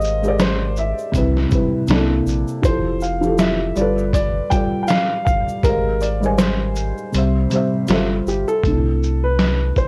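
A lightly swung 80 BPM lo-fi hip hop groove in C major carries this mellow, dreamy excerpt, where a compressed, pitched-down sampler-style drum kit with a thumpy kick sits up front beside a round sine sub bass, a felt-muted upright piano with audible action noise and cassette tape coloring plays lush chords like Abmaj13 and G13sus4 beneath a woody, vintage upright piano melody, a grainy tube shaker ticks in the background until 8.6 s, the kick drops out from 7.1 s to 8.6 s, and the whole mix drifts through worn, warbling old tape and wet studio reverb before settling on C69.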